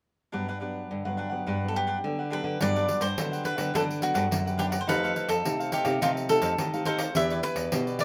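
Joyful and playful, this samba and choro fragment in G major moves at 106 BPM in a straight 4/4, opening on Gmaj7 with a warm, crisp picked cavaquinho accompaniment, a warm thumb-plucked nylon-string guitar in the background and a full-bodied, deep fingerpicked nylon-string bass up front, before a bright lead cavaquinho takes the melody at 1.7 seconds and a jingly pandeiro played with soft hands joins at 2.6 seconds as the harmony passes through F9 to Em7 in moderate studio reverb.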